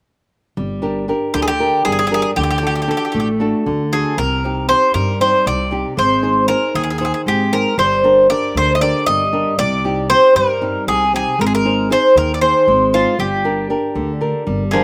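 Recorded outdoors with an almost dry sound, this short cut from a longer Greek folk piece for bouzouki band has a moody, bittersweet cast in G Phrygian. It moves at 233 BPM in eighths through a straight 7/8, with the harmony passing from Gm through D, Cm and Ab before settling back on Gm. From 0.6 seconds a fingerpicked nylon-string guitar sits up front with a small, warm tone, together with a woody, dark pizzicato upright bass on steel strings. At 1.3 seconds the lead bouzouki enters with the melody, its metallic double strings and some octave-doubled courses ringing warm and forward, trailed by a slapback echo. A second bouzouki touches a single low note in the closing moment at 14.7 seconds, just as the passage is cut off.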